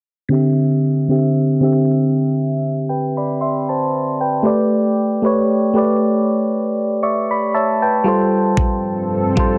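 Sensual and moody, this slow contemporary R&B excerpt at 58 BPM in D dorian opens at 0.3 seconds with a glassy, bell-like FM electric piano carrying the chorused, filter-swept accompaniment through D9sus4, A9sus4 and G9sus4 chords, adding a fill from 6.5 seconds before a knocking, tape-warm electronic kick arrives at 8.6 seconds and a thick, detuned unison pad with chorus and phaser joins at 8.8 seconds, all set in light digital ambience.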